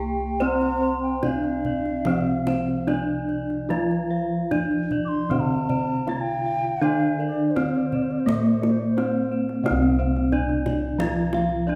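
A ringing bronze metallophone, struck with a horn mallet and tuned in pairs so its notes shimmer with beating, carries the melody up front in this shimmering, ceremonial Javanese gamelan passage taken from a longer piece. An airy, close-miked bansuri weaves an expressive second line with vibrato and soft attacks until 9.4 seconds, while a lower metallophone played with a wooden mallet supplies accompaniment. Very quiet round bossed gongs hold the bass, a brighter horn-mallet metallophone and bright, airy bossed gongs spin arpeggios, and a tight kendang played with soft hands keeps the straight pulse, all set in moderate stage reverb.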